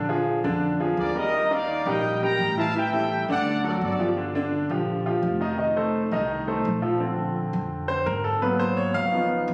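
Salsa with a joyful, festive mood, carried by a brilliant, polished grand piano up front and a woody, thumpy pizzicato upright bass underneath. A bright trumpet section with vibrato plays the pop-style melody from 1.0 to 4.1 seconds, and the piano takes a solo from 7.0 seconds. The sound is roomy and compressed, as if captured on a phone in a club, with a wet, lingering reverb.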